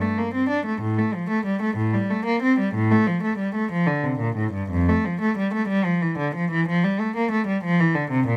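Dance-like and radiant, this brief classical excerpt of a baroque-style suite movement for unaccompanied cello moves in 12/8 at 62 BPM to the dotted quarter with a free, rubato feel in F major, as one player bows a reedy, gut-string period-style tone spanning F2 to D4, heard up front through close, detailed microphones in a dry room for the full 8.4 seconds.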